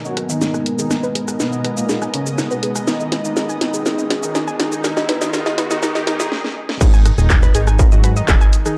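This excerpt from a melodic techno track moves in a straight, driving feel, opening with a techno drum kit of cracking snare, hats, handclaps, rim clicks, shaker and crash that builds through a long fill while its percussion pumps against the sidechain. Over it, a deep, moody analog pad holds sustained chords with chorus, phaser and 12-bit grit, while a blurred, cloudy granular pad drifts in the background and a soft supersaw carries a smooth melody through a low-pass filter and tape echo. A warbling, nasal pluck plays lo-fi arpeggios behind them, its tape echo and chorus adding dusty character, as filter sweeps open the pluck, supersaw and pad across the build and an electronic riser enters at 2.8 seconds. After a brief stop, the drop lands at 6.8 seconds with a distorted electronic kick placed up front and a fat, detuned sawtooth bass that evolves as its filter sweeps. The production is dark and cinematic, with light reverb and drums that sound re-recorded in a large room.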